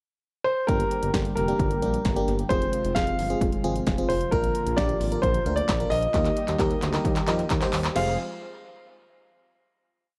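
A dry, punchy analog drum machine drives a straight 4/4 synth-pop beat of kick, snare, hi-hat, handclaps and crash, touched with tape echo, and it rolls into a fill from 6.1 s to 8.0 s. After a clear, intimate grand piano opens the pickup at 0.4 s with an up-front motif-based melody, a smooth gliding synth bass pulses in eighth notes beneath it. A glassy, bell-like FM electric piano plays syncopated chords through chorus, phaser and tape echo, while a brassy, airy pad sustains in the background, all giving this short, echo-heavy piece a cool, nocturnal mood before it settles on a final chord.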